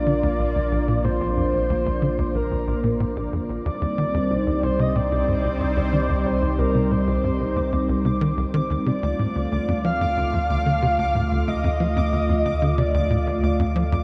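This ambient, sequencer-driven space music sounds expansive and cosmic, drifting through Bb, C minor and D minor chords in a short cut from a longer piece. A tight, punchy sequencer bass drives the riff with plucky sawtooth and square tones, a moving notch and a filter sweep running throughout, touched by subtle chorus and tape echo. Beneath it, a deep, round sine sub bass holds the floor, while a sweeping resonant pad sits up front with evolving, full-bodied sustained chords that swell slowly through chorus. A breathy, flute-like synth lead carries the melody with soft, warbling vintage character, vibrato and a cassette-tape grain, bathed in lush chorus, shimmer reverb and tape echo before it drops out at 13.7 seconds. High above, a quiet, mellow gated texture pulses in tempo on a single detuned note, and the whole mix sits in a huge, wet reverb with a dark, warm production.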